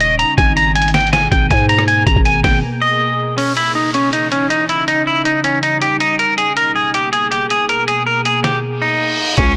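Hard-hitting and dark, this half-time trap excerpt at 160 BPM in G# harmonic minor sets a bright, clean picked electric guitar melody up front, with low-pass filtering and tape echo, over a glassy, ethereal FM pad with ensemble chorus and built-in reverb, a growling, buzzy 808-style bass that drops out at 2.6 seconds before returning with the impact at 9.4 seconds, a muffled, pitched-down sampler-style kit with thumpy kick, fat snare, hi-hat, rim click and crash, and electronic downlifter and reverse cymbal effects, all captured in a dry, blown-out, overdriven recording moving through G#madd9, C#madd9 and D#7.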